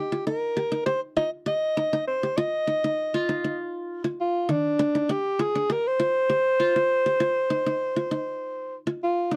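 A straight 4/4 pulse at 100 BPM drives this short, funky afrobeat passage, cut from a longer piece and hypnotic in mood. A breathy alto saxophone carries the melody as a pop-style solo, mellow with a light vibrato, scooped notes and a smooth top, moving between D4 and Eb5. Beneath it, a qanun played with fingerpicks spins arpeggios between Eb3 and G4, its triple strings giving an acoustic, bright-edged ring. Both instruments sit up front for the full 9.4 seconds, over a harmony that moves from Ebadd9 to Dm7 at 4.8 seconds. The sound is dry and close, in the manner of a 1970s studio, with only a light touch of reverb.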